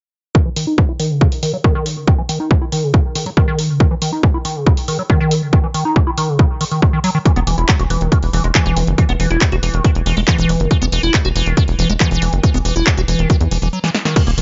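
A digital ambience with a dull, rolled-off top end frames this hypnotic, alien excerpt of psychedelic trance at 139 BPM in a straight 4/4. A squelchy, resonant liquid acid bass carries the riff from 0.3 seconds, its square-wave tone smoothed by phaser, cassette tape colour, sidechain pumping and dub echo while a filter sweep runs across it. A heavy, tape-warm electronic kick sits up front beneath a techno kit of punchy snare, handclaps, warm hi-hats and crash cymbal, both re-recorded in a small room. At 7.4 seconds a tight, nasal sequencer bass joins, a driving sawtooth and square-wave pluck with tube saturation that adds grit to the low end. The harmony moves from Dbsus2 to E5 around the midpoint, and a brief break at 13.7 seconds, with a drum fill from 13.8 seconds, closes the passage.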